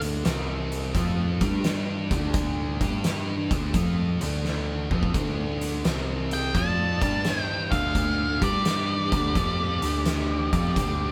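Captured live in one room with light reverb, this smoky, gritty blues rock and southern rock power-trio excerpt swings at 86 BPM in D minor, as a biting, double-tracked overdriven guitar riff rides over fuzzy, punchy picked electric bass and an oversized low-tuned drum kit with a fat snare and saturated stone-room pump, a drum fill arrives at 4.4 seconds, and at 6.3 seconds an up-front octave-fuzz lead guitar enters with a dark, smooth second guitar line in the background.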